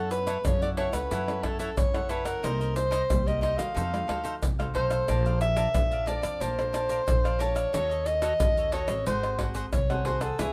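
A mellow soprano saxophone opens this lively, joyful samba and choro excerpt up front with a smooth, jazz-style solo full of vibrato and scooped notes, over a bright, crisp picked cavaquinho, a thumb-plucked classical nylon-string guitar in the background and a woody, thumpy pizzicato upright bass, joined from 0.1 s by a close, dry percussion section of egg shaker, pandeiro, tamborim and deep surdo, as the harmony moves through jazzy chords such as F#m7, Bbmaj9 and G#7b9 in a moderate studio ambience.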